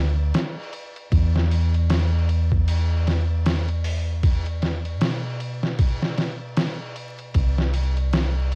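Hypnotic and brooding, this short trip hop fragment moves at 77 BPM with a swung 16th-note feel, built on a deep, round fingered electric bass that sits dark and punchy up front from the opening second. A sampler-style drum kit joins at 0.3 s, its pitched-down, muffled sound carrying a thumpy kick, medium-tuned snare, hi-hat and ride cymbal, with a compressed, cassette-tape grit. Light reverb, home-cassette character and vinyl crackle give the whole piece a dusty, lo-fi atmosphere.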